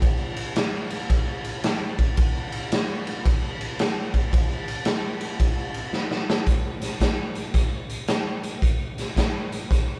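A gritty, up-front acoustic drum kit with a punchy kick, medium-tuned snare, hi-hat and ride cymbal carries this laid-back, rollicking blues excerpt at 112 BPM in a swung 4/4, its saturated, rolled-off sound set in a bright stone room with light reverb, and a drum fill at 5.9 s leads into a new section at 6.5 s.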